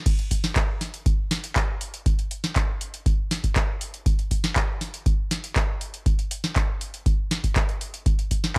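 A straight 4/4 house groove at 120 BPM runs from 0.1 seconds to the close of this short cut from a longer piece, carried entirely by drums. An electronic kick drum sits up front with a deep, analog thump, its tape-warm tone carrying the faint character of being re-recorded in a small room. Alongside it, a booming analog drum machine supplies crash cymbal, handclaps, hi-hat and a crisp snare, with metallic hats and a short room sound clinging to the snare, clap and hats. The drum machine sits a little lower in level than the kick, though both stay close and forward in the mix. Otherwise the sound is dry, and the track has a hypnotic, trippy pull.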